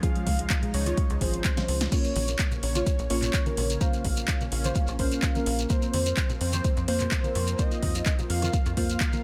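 Progressive house with a driving, bittersweet mood, cut from a longer piece, where an overdriven electronic kick sits up front beneath a punchy-snare deep house kit with metallic hats and a drum fill at 1.6 seconds, while a tight sawtooth sequencer bass pumps against the kick and congas with woodblock murmur in the background, joined by a grainy, close shekere from 1.9 seconds. Over chords moving from Db to Bbmadd9 to Fsus4, a thick, detuned unison lead carries the melody with vibrato and tape echo, a deep mellow chord stab adds chorused hits, a soft round pluck spins arpeggios through cassette tape and echo, and a lush, phased unison pad sustains behind it all. The mix is dry, with little reverb.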